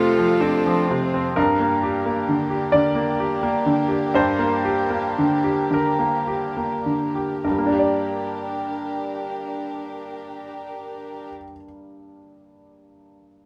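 A 6/8 pulse moves freely in rubato and slows through the opening 7.4 seconds of this fragile, longing neoclassical fragment for piano and strings, cut from a longer piece. A bright, brilliant concert grand piano sits up front with a worn character and deep bass, carrying the accompaniment throughout. At the start, a single violin offers a brief, intimate melody with an airy bow and light vibrato before falling away at 0.8 seconds, while a pure, floating cello traces a second line in the background. A dark viola adds close, soft-attacked accompaniment, and a chamber string section played sul tasto holds sustained chords until 11.3 seconds, after which the piano continues alone. Light reverb gives the whole a soft sense of space.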